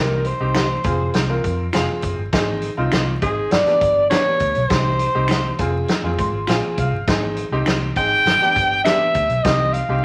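A breathy alto saxophone carries the melody from the very start of this uptempo 1960s-style soul piece, joined at once by a bright, slightly detuned upright piano and a dark, round, foam-muted electric bass, with a swinging big-band drum kit coming in almost immediately. At 101 BPM in a straight 4/4, the mood is joyful and danceable as the chords cycle through Cm, Fm, Ab and G. The saxophone sits up front with subtone, vibrato and a smooth top in a jazz style, while the worn, woody piano steps forward with a fill between 5.9 and 7.1 seconds. The drums bring a punchy kick and medium-tuned snare in a big, natural room, and from 0.5 seconds a twangy, compressed electric guitar plays stabs in the background beside a very quiet, close finger snap. Wet studio reverb and vinyl crackle lend the recording a vintage patina, and the clip is cut from a longer piece.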